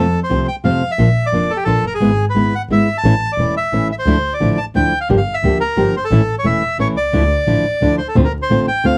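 Tense and melancholic, this short tango excerpt in D minor moves at 176 BPM in a rubato 3/4, with a reedy, boxy bandoneon singing the melody up front over a thumb-plucked classical nylon-string guitar and a warm bowed double bass full of vibrato and portamento, all captured with close, detailed microphones, little reverb and a layer of vinyl crackle as the harmony settles onto Dm7 at 8.2 seconds.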